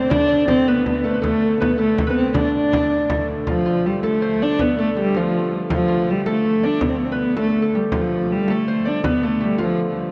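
A dark, woody viola da gamba sits up front and carries the melody of this ancient, driving medieval dance, its bowed, fretted line ringing with light vibrato and a smooth top in D dorian. It moves at 108 BPM in a straight 6/8, while a fingerpicked concert harp adds a ringing second line above it and a deep, close, dry frame drum keeps the pulse. A nasal, boxy hurdy-gurdy holds a wheel-bowed drone in the background throughout. A reedy bass recorder with an airy chiff and soft attack plays a distant second line only in the opening passage, dropping out at 3.3 seconds as the music moves into a new section around 3.5 seconds. The whole ensemble sounds through a wet church reverb and a worn cassette-tape character with warbly pitch drift, in a short cut from a longer piece.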